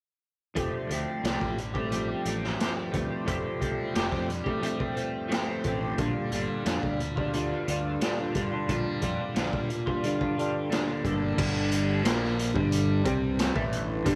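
Trippy and mysterious, this psychedelic rock excerpt at 89 BPM sets a bright, clean electric guitar riff, double-tracked through a rotary speaker, over a growly fuzz bass, a raw, boomy garage drum kit with crash, hi-hat and snare, and a buzzing, shimmering tanpura drone in the background, all bathed in echo chamber reverb as the chords move from Fadd9 to Bb6 and then Gmadd9 at 11.0 seconds.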